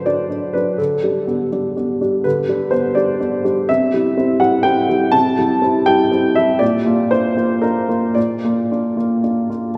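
A woody, slightly detuned upright piano with audible action noise sits up front in this intimate, tender neoclassical minimalist passage cut from a longer piece, moving in a rubato 3/4 at around 108-126 BPM through D, G/D, C and Bb, tuned to A4 = 438 Hz and ringing into the 3.0-second tail of a wet church reverb.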